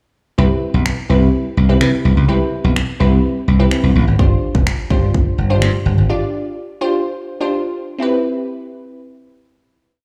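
A punchy, bright slap bass drives this upbeat, summery dance-pop piece at 126 BPM in C major, its syncopated line pumping with the sidechain and laced with chromatic approach notes until it drops out at 6.1 seconds. A glassy, detuned wavetable pluck plays close-voiced syncopated chords moving from Cmaj7 to G7sus4, colored by chorus, slapback echo and a filter sweep, and it carries on alone into the final Cmaj7 that closes the piece at 10.0 seconds. An overdriven, layered electronic pop kit of finger snaps and kick adds a syncopated beat, and the whole piece sounds like a live gig heard through the venue's PA with club reverb.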